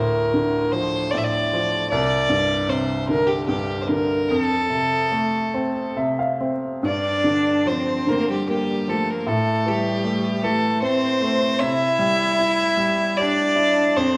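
Heard through vinyl crackle and the damp echo of a stone room where the trio plays live together, this haunting, longing Celtic slow air in G dorian drifts in a rubato 3/4 at 68-78 BPM, as a reedy, gut-string fiddle carries the melody up front over a woody, vintage upright piano that adds a fill at 5.5 seconds, before a bowed sul tasto cello with light vibrato and a gentle attack slips in close and intimate at 6.9 seconds as a second line.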